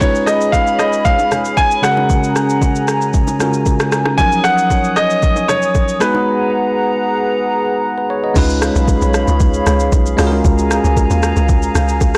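An overdriven, blown-out amapiano excerpt at 115 BPM with a hypnotic, deep mood, where a clear concert grand piano carries the melody through digital delay until 6.5 seconds over bell-like tine electric piano, a hollow, flute-like pad pumping with sidechain and chorus, a smooth R&B drum kit with soft-clipped snare and 12-bit sampler grit, very quiet ringing congas and bongos, and a tight, punchy log drum bass that arrives for the drop at 8.4 seconds under chords moving from C#7 to F#maj9/C#, D#m9 and G#m9.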